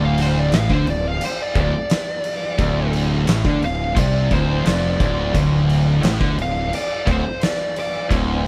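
A slow, sludgy stoner and doom metal riff opens the clip in D minor at 87 BPM in a straight 4/4, with a thick, double-tracked fuzz guitar and a compressed, overdriven electric guitar sitting in the background, both picked low around a D5 power chord. A fingered electric bass, recorded direct and through an amp, adds an overdriven fuzz growl beneath them, punchy and heavy. Almost at once a dark, distorted fuzz lead guitar takes a solo line high above the riff, its picked notes trailed by a slapback echo, and it stops at 8.1 seconds. An oversized, low-tuned acoustic drum kit sits up front with a fat snare, a punchy kick and dark crash cymbals, its saturated, gritty sound filling a bright stone room that pumps around the hits. The mix is otherwise dry, giving this short fragment of a longer piece an ominous, weighty mood.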